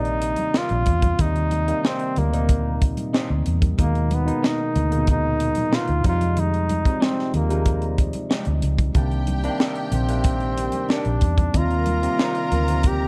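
Lush 1970s-style soul in Eb major at 93 BPM, this smooth excerpt features a breathy, intimate flugelhorn carrying the melody up front over a barky tine electric piano with light overdrive and phaser, a round, foam-muted fingered bass and a tight funk drum kit with a high-tuned snare. Very quiet congas join in, and a twangy, slightly broken-up guitar riff with spring reverb sits in the background, while a rich, bowed string section enters at 8.9 s with a second line. The chords move through Cm9, Eb6, Abmadd9 and Fm9 in a dark production with small room ambience.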